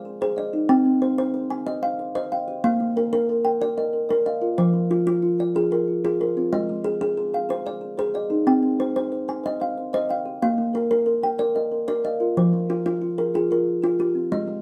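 Trance-like and hypnotic, this short passage, cut from a longer piece, is a southern African traditional piece built on a mbira-style interlocking cycle in a straight 12/8. Two kalimbas play arpeggios together from start to finish, cycling through Ab, Cm, Bb and Fm. The more prominent one sits up front with a thumb-plucked, dark and smooth tone, its short, woody notes reaching from F3 up to Ab5. The second kalimba is softer and further back, fingertip-plucked and mellow, with hollow, ringing notes that carry a boxy small-room character. The pair sound as if played live in one room with moderate studio reverb, and at 12.4 seconds the cycle settles onto Fm as a new section begins.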